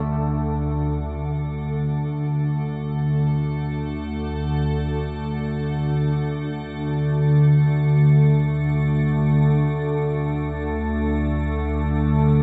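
Dark ambient drone in free time and desolate in mood, where a calm, wave-folded organ-like drone sits up front in the low register beneath a resonant, detuned sawtooth pad and a crystalline glass pad, with the pads fading in from 0.1 s and all three parts sustained through this 12.4-second fragment of a longer piece, bathed in a cavernous cathedral reverb.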